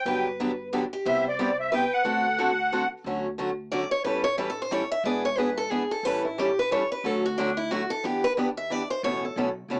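Bright, boxy picked steel-string parlour guitars with audible finger squeak drive this charming, swinging jazz manouche excerpt at 180 BPM in 3/4, with the reedy, shimmering musette accordion carrying the melody up front until 2.9 s before a guitar solo takes over from 3.1 s as the music settles into D major, a second guitar providing accompaniment while a woody, thumpy pizzicato upright bass sits in the background, the accordion and guitars tinted by cassette tape in a small-speaker home recording with light reverb.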